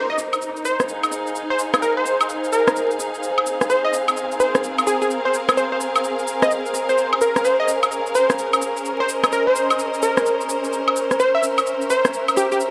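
Overdriven electronic percussion sits up front: a layered shaker, woodblock and rim click enter at 0.2 s, treated with studio reverb. This is a soulful, late-night slice of two-step UK garage at 128 BPM in 4/4, swung at 63% on the sixteenths and cut from a longer piece. A punchy, catchy lead of detuned sawtooth and sine voices in unison, with a noise layer and a filter sweep, carries the melody between G4 and E5; it has a fast attack, sustains its notes, and trails an analog delay. Behind it, a lush bowed string section adds a smooth, even ensemble texture with vibrato, spanning C4 to F5. Further back, a vintage analog pad of wave-folded sawtooth and sine holds a soft-attack C5 through a warbling chorus. The whole passage rests on a single Fm7 chord in F minor, set in an echo-heavy mix with a moderate plate reverb and a layer of vinyl crackle.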